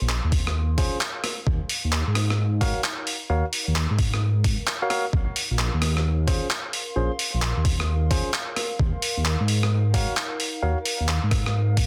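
A dark, rumbling detuned saw bass sits up front in this skippy, moody two-step UK garage excerpt at 131 BPM, its tube saturation adding a beating, deep growl between Bb1 and Ab2. A gritty, compressed sampler-style kit of handclaps, hi-hat and rim click, with soft clipping on the snare, swings at 66% on the 16ths from 0.1 seconds, joined by a thumpy electronic kick at 0.3 seconds, both carrying the air of a large room. In the background, a warbling, nostalgic lo-fi pad fades in through chorus, phaser and its own reverb, pumping against the sidechain. A clean tine electric piano drops in stabs from 0.8 seconds, trailed by tape echo. The harmony moves from Bbm9 to Ebm9, back to Bbm9 and on to Ebsus2, all wrapped in light reverb and a dense, heavily limited modern master.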